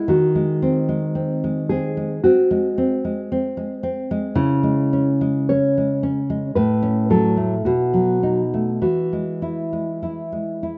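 Played in a loose, rubato 4/4, this short cut from a longer romantic duo unfolds with a lyrical, serene calm. One nylon-string guitar carries a dark, thumb-plucked melody in its middle register, while a second nylon-string guitar sits up front with full-bodied, fingerpicked accompaniment, finger squeaks audible as the harmony moves from G#7 through C#m and F#m before B7 comes to rest on E at 8.8 seconds. Light reverb and studio ambience surround the deep classical tone of both instruments in a rough home demo mix.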